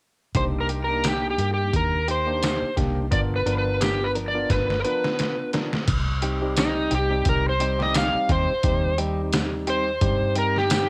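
Soulful and brooding, this straight-eighth soul blues excerpt at 87 BPM in 4/4 pairs muffled, pitched-down trip hop sampler drums with a thumpy kick, overdrive and tambourine against a round, foam-muted fingered bass and a barky tine electric piano through a combo amp, while an up-front overdriven slide guitar carries the melody over Cm7 and G7#9, a clean, direct-recorded electric guitar adds faint chorused stabs in the background, a drum fill runs from 4.5 to 5.9 seconds, and the slide guitar takes a solo over Cm from 5.9 seconds, all in light reverb.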